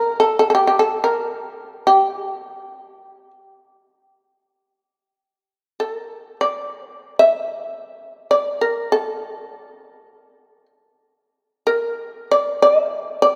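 A solo shamisen, plectrum-plucked with a percussive, buzzing bite and a powerful, up-front presence, plays in free time through this calm, austere excerpt of Japanese traditional chamber music, its fretless voice ringing in a moderate church reverb.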